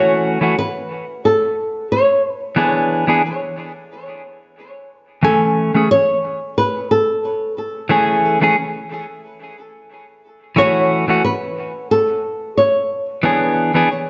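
A dark, fingerpicked flamenco guitar carries the melody from the opening, its finger squeaks audible through vintage 12-bit sampler grit and delay, while a clean, compressed electric guitar picks a warm accompaniment beside it, softened by a low-pass filter and tape echo. This sunny, relaxed chillout fragment moves with a light swing over F#m7, E7 and Amaj7, cut from a longer piece, with the flamenco guitar stopping at 13.1 seconds just before the electric guitar's final notes. Both guitars sit up front in a wet recital hall reverb blended with small room ambience, and the highs are rolled off for a hazy, muted sheen.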